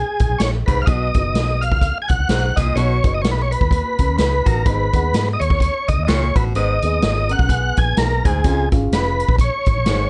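Swung eighths from a roomy big-band drum kit with a boomy kick drive this danceable, uptempo 1960s-style soul excerpt, as a round, foam-muted electric bass sits beneath a clean tonewheel organ melody with key click and chorus vibrato, a bright baritone saxophone riff full of scooped notes, woody, boxy upright piano accompaniment, and a slightly broken-up electric guitar riff in the background from 3.7 to 8.2 seconds.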